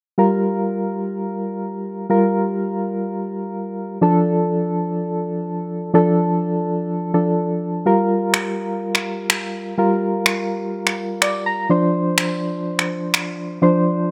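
Soft, electric-piano-like synth keys open the excerpt at 0.2 seconds, their round, mellow tone treated with chorus and tremolo and sitting up front as accompaniment in G minor. This dance-pop passage moves at 125 BPM in a straight 4/4, with an energetic, driving mood, while the keys outline a progression from Gm7 to Dm, back to Gm7, then Dm7. Their sound has a fast attack that decays gently, shaped from triangle- and sine-like tones. Electronic finger snaps join at 8.3 seconds, overdriven and produced with the close character of a small room, also placed up front. Near the end the synth keys add a short fill from 11.0 to 11.7 seconds, and a light reverb colors the whole.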